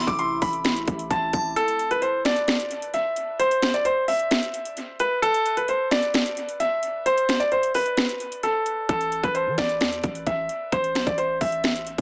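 A half-time trap groove at 131 BPM in A minor sets a menacing, brooding tone, with an overdriven trap kit of hard-clipped kick, sharp snare, metallic hats and finger snaps sitting up front, its kick dropping out from 1.6 to 8.9 seconds. A clear, polished baby grand piano carries the melody through a low-pass filter and dub echo, while a tinkling FM tine bell, a detuned, wave-folded pad washed in chorus and phaser, and a deep, boomy 808 bass open the cut before falling away at about 1.6 seconds, the bass returning at 8.9. Moderate spring reverb and an echo-heavy, small-speaker mix give this fragment of a longer piece a murky, boxed-in character.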